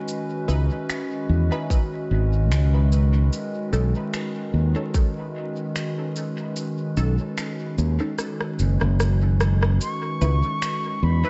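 Wrapped in vinyl crackle, light reverb and a dulled top end, this meditative, hazy ambient dub fragment rests on a warbling, nostalgic tape-like pad with chorus, a muted, detuned filtered chord stab carrying phaser and dub echo, an up-front fingered electric bass, and produced electronic shaker, finger snaps and rim click with dub echo, while a tight electronic kick plays only from 1.7 to 5.1 seconds, a drum fill arrives at 8.2 seconds, and an airy, distant silver concert flute with vibrato and dub echo enters at 9.8 seconds as the chords return to C#m7.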